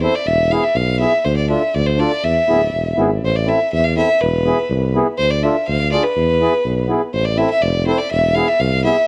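Klezmer in 2/4 with a straight feel, this short excerpt cut from a longer piece sounds festive and soulful, its harmony circling between E, Dm and Am. A bright, intense bowed violin carries the melody up front, singing with vibrato and trailing an analog delay. Beneath it a mellow accordion fills in the accompaniment with a reedy, round single-reed tone, close-miked and dry. A tuba holds down the bass with light vibrato, sitting up front in a pop style. A moderate studio reverb surrounds the group, and the whole recording carries the worn, warbling pitch drift of old cassette tape, with all three parts playing together from the opening through about 9 seconds.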